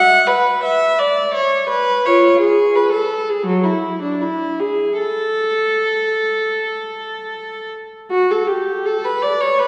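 A lone bowed viola carries this radiant, dance-like baroque-style suite movement, its smooth, even tone shaded with vibrato as it moves between F#3 and F#5 in A major, tuned to A4 = 438 Hz. The 4/4 pulse flexes with rubato around 74-86 BPM, and the phrase returns to its opening material at 8.1 seconds before the 9.7-second fragment of a longer piece breaks off. A wet concert hall reverb with a 2.0-second decay places the player further back in the room, lending the sound a warm, distant glow.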